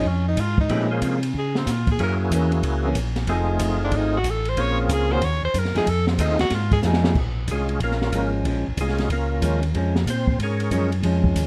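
A punchy, forceful tenor saxophone leads this bluesy, soulful soul jazz organ trio excerpt with a bright, vibrato-laden solo until 6.8 seconds, when a drum fill hands off at 7.2 seconds to a percussive, lightly overdriven tonewheel organ solo with chorus vibrato and slow rotary speaker, all over a clean, picked hollow-body electric guitar, a round, mellow tonewheel organ bass line, and a small-room acoustic drum kit with dark cymbals, a high-tuned snare and a boomy kick, in a dark production.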